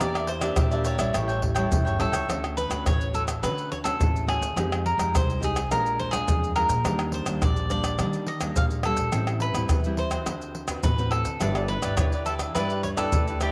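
Festive and sunny, this samba and choro excerpt sets a crisp, up-front picked cavaquinho melody over a second bright cavaquinho that accompanies from 0.0 to 2.3 s and returns at 11.4 s, a fingerpicked nylon-string guitar with a deep classical tone and audible finger squeak, a woody, growly pizzicato upright bass, and up-front maracas, tight surdo, pandeiro and tamborim played with soft hands, all in a moderate spring reverb, with the cavaquinhos and guitar carrying the cassette-tape color of a home recording.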